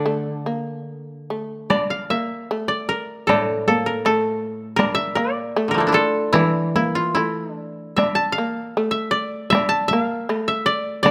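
Loose and rubato over a 2/4 metre, this meditative, austere passage of traditional Japanese chamber music is cut from a longer piece, with an up-front koto carrying the mellow, woody melody on fingerpicks while a second koto supplies a warm, dry accompaniment in a lower register. A bright, buzzing shamisen, plectrum-plucked, percussive and powerful, plays a second line throughout, and solo taiko drums struck with hard sticks join at 1.7 seconds, sounding in a live room. Close, detailed microphones with light reverb bring out every plucked string.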